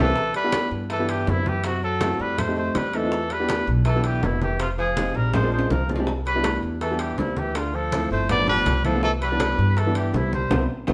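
A straight 4/4 pulse at 162 BPM drives this sunny, danceable Afro-Cuban jazz excerpt in C major, where an up-front trumpet with light vibrato and scooped notes carries the melody over a breathy, soft-attacked tenor saxophone second line, a boxy, woody upright piano comps through rich chords from Gmaj13 to Cmaj9, a bright pizzicato upright bass sits up front, low-tuned hard-hand congas, tight high-tuned bongos and ringing metal-shell timbales enter by 0.3 seconds, and drum fills at 5.3 and 10.5 seconds mark the phrase within a moderate stone-room reverb that places the band live together.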